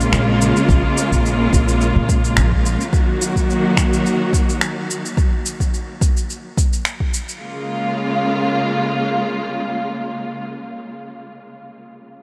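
A gently swung 4/4 groove at 107 BPM opens this organic downtempo piece in Bb minor, with overdriven electronic shaker and finger snaps carrying the pulse until 7.4 s and a deep, overdriven electronic kick sitting up front from 0.7 s. A pizzicato upright bass adds woody, thumpy gut-string notes only until 2.7 s, while a lush bowed symphonic string section, full of vibrato and portamento, holds pumping sustained chords that move from Bbm7 to Ebm and back through to 10.4 s. A huge ambient reverb soaks the mix in a dreamy haze, giving this fragment a warm, meditative calm.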